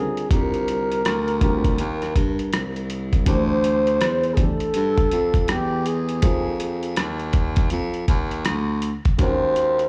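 A swung 81 BPM jazz-hop groove in 4/4 rides a lo-fi sampler-style kit of hi-hat, rim click and a thumpy, overdriven, pitched-down kick that enters at 0.2 seconds, while a breathy baritone saxophone carries a whispered, scooped bass line, a dark upright piano with audible action noise and slight detuning sits in the background, and a breathy flugelhorn with vibrato and slapback echo sings a smoky, mellow D phrygian melody over C7sus2, D7sus2, Fm7 and Ebm7, all heard through a club PA in this short excerpt from a longer piece.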